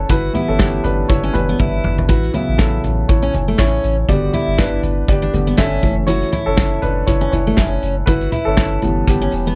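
Piano-driven pop with an uplifting, anthemic mood, moving at 120 BPM in 4/4 with a light swing on the sixteenths, cut from a longer piece. A warm grand piano carries the accompaniment and stands out front as the featured voice throughout, its tone present and polished. Beneath it a deep, round sub bass holds the low end with a sine-like, sustained tone, while a picked steel-string acoustic guitar plays a riff with the warm, full body and fresh strings of a jumbo. A loose indie drum kit sits up front with a punchy kick, medium-tuned snare, hi-hat, toms and handclaps in a pumping studio room, dropping in a fill at 1.6 seconds. The chords move from Em/G through A6, G and F#m7 before returning to Em/G, all in a dry sound with little reverb.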